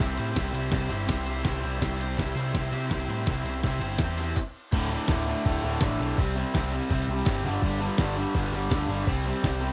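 A straight 4/4 pulse at 165 BPM drives this raw, rowdy garage rock excerpt, with a lo-fi sampler-style kit of thumpy kick, fat snare, crash, ride and handclaps sounding muffled, compressed and pitched down beneath a bright, double-tracked overdriven guitar riff that sits up front with cassette tape grit. A dark, round and punchy overdriven picked bass runs underneath, while a distant group handclap enters at 0.7 seconds, very quiet as if heard in a large room. After a brief stop at 4.4 seconds, the band drops back in at 4.7 seconds on D5, moving through C5 and G5 before returning to C5, all with light reverb and the rough feel of a home cassette recording.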